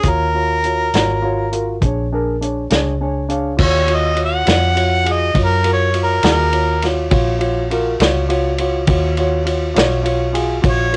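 Slow blues in Eb minor at 68 BPM in a straight 12/8, brooding and smoky, cut from a longer piece, with an overdriven, tape-tinged harmonica taking a jazz-style solo with light vibrato and scooped notes over a dark, mellow concert grand that adds a fill from 2.7 to 3.6 seconds, a round, foam-muted fingered electric bass, and a dry, punchy soul drum kit with a rolled-off top, all set in light reverb on a home cassette recording that moves from Ebm7 to Bb7#9 and back.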